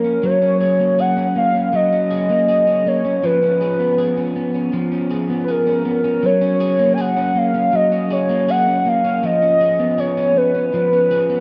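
A dream pop piece, cut from a longer work, opens at 0.0 seconds with a warbling, nostalgic lead and an electric guitar sounding together, setting a blissful, ethereal mood in a straight 4/4. The lead carries the melody with a detuned blend of triangle and sawtooth tones, a soft attack and long sustained notes, colored by vibrato, portamento, chorus and tape echo. Beneath it, the guitar plays fingered arpeggios in a dark, slightly broken-up tone at the edge of break-up, treated with analog chorus and tape echo. Both parts sit up front in a lush plate reverb with a 2.8-second decay. The harmony alternates between F#add9 and C#7 throughout, and both instruments continue together until 11.4 seconds.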